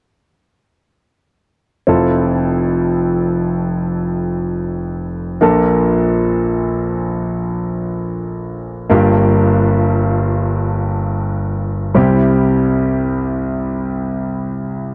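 A warm concert grand piano enters at 1.9 seconds in free time, playing hopeful, emotional pop accompaniment in F major through Fmaj7, Bbmaj7, Gm7 and C chords, its deep bass and smooth, vintage tone sitting up front in light reverb on worn, warbling old cassette tape with drifting pitch, until this cut from a longer piece ends at 14.9 seconds.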